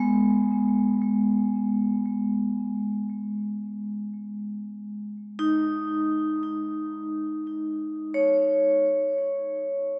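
Weightless and luminous, this ambient fragment from a longer piece features a solo vibraphone struck with medium hard mallets, its ringing, metallic tone and slow motor vibrato placed up front with delay, drifting through a G#m chord and a bare G#5 before the harmony falls away at 8.9 seconds, all bathed in a cavernous cathedral reverb within a dark production.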